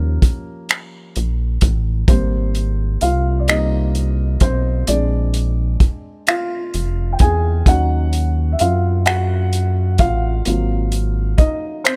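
Recorded in a small room with the parts sitting up front, this slow six-eight R&B fragment has a sultry, late-night mood. A dark, mellow grand piano with short sustain carries the solo for the full 12.0 seconds over chords such as Eb9, Abmaj7 and Ebm7, while a rubbery, hollow square-wave bass with a resonant filter pluck sits underneath until 11.5 seconds. From 0.2 seconds a soul drum kit adds finger snaps, hi-hat and a tight kick, its top rolled off.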